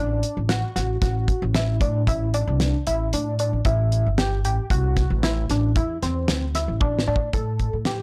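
A tight, wave-folded synth arpeggio with chorus, phaser and plate reverb opens this driving, brooding progressive instrumental in 7/4 at 114 BPM in A dorian, together with a woody, thumpy pizzicato upright bass, and a damped 70s drum kit with a fat snare and tight kick joins at 0.2 seconds. The harmony moves from D/A to Am7 and lands on A7(no3) after a drum fill at 6.8 seconds. The recording is blown-out and overdriven with light reverb, and this cut from a longer piece keeps bass, drums and synth up front.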